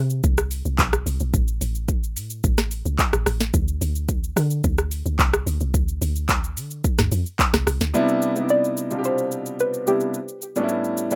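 Amapiano at 109 BPM with a late-night, deep mood, opening on a drop where a round, percussive log drum bass and an up-front electronic kit of deep kick, sharp snare, metallic hats, handclaps, rim click, shaker and toms ride over a chordless start that moves to D7(no3), before at 7.9 seconds the bass stops and a clear grand piano takes over on Cmaj7 to A7, joined at 8.5 seconds by a soft, detuned pluck melody with chorus and analog delay, all in a dry, rough home demo mix cut from a longer piece.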